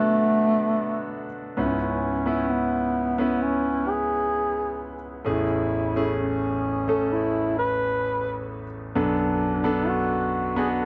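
A mellow duduk carries the melody from the first moment, its vibrato-laden, folk-style voice sitting up front yet carrying a distant, roomy quality, ranging from A3 to B4. Beneath it, a bright concert grand piano provides the accompaniment across its full span, from a deep bass at A1 up to A4, with a brilliant, polished tone and long sustain that keeps it present alongside the solo line. This short pop passage, cut from a longer piece, has a tender, hopeful mood and a straight, unhurried pulse in four. The harmony moves from Bm7 to C#m7 at 1.6 seconds, settles on Amaj7 at 5.3 seconds, and returns to Bm7 at 9.0 seconds. Light reverb and a dark production with a rounded top end give the whole recording a soft, intimate glow.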